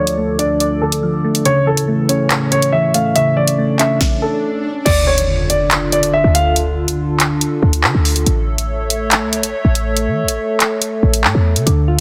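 Cold and ominous, this half-time drill excerpt at 141 BPM in D harmonic minor opens with a dark, mellow concert grand piano melody carrying audible action noise over soft, round electric-piano-like synth keys and a hollow, airy pad under a filter sweep, then after a swell, a stop and an impact at 4.9 seconds, a punchy, tight 808-style bass joins the sharp snare, hard-clipped kick, bright hi-hats, handclaps and crash cymbal in a dense, heavily limited mix with light reverb.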